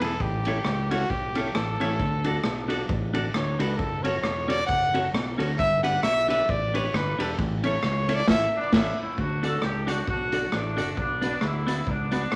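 Vinyl crackle and a large studio reverb frame this cheerful, upbeat ska excerpt, where a punchy, close-miked trumpet with light vibrato carries the melody until 9.0 seconds over twangy clean electric guitar, a gritty garage drum kit with a punchy kick (both touched by slapback echo) and a round fingered electric bass. A band accent arrives at 8.3 seconds, and a clear, vintage horn section takes up the melody from 8.5 seconds.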